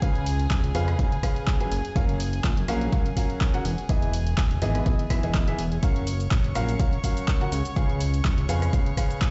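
Feel-good and euphoric, this piano house excerpt moves at 124 BPM in F# major with a light 16th-note swing, cycling through C#7, F#maj7 and Emaj7 as a clear grand piano plays a riff roughened by vintage 12-bit sampler grit and dub echo, over soft, floating bowed strings holding sustained chords. A fat, detuned sawtooth bass with a filter sweep sits up front until 8.8 seconds, pumping against an overdriven, dry electronic kick, while a tape-warm analog drum machine adds cabasa, handclaps, hi-hat and rim click. The mix sounds as if played on a big sound system in a bare stone room, dull at the top end.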